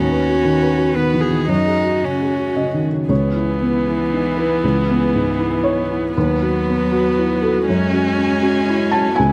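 This short excerpt of melancholic, reflective neoclassical piano and strings opens with all four parts sounding together from the start: a felt-muted upright piano carrying the accompaniment, a bowed cello on a second line, a viola adding further accompaniment, and a studio string section holding sustained chords. The piano sits up front, soft, mellow and a little boxy, with a dark, intimate tone that spans from its low register up to A5. The solo cello plays sul tasto with light vibrato and an airy bow, while the single viola keeps a smooth, even line with vibrato close by. Far back in the mix, the ensemble strings add expressive portamento and soft attacks. In a rubato triple metre, the harmony moves from B/D# to F#madd9, settles on C#m7 at 3.1 seconds, then returns to B/D# and F#madd9 over light reverb and close, detailed microphones.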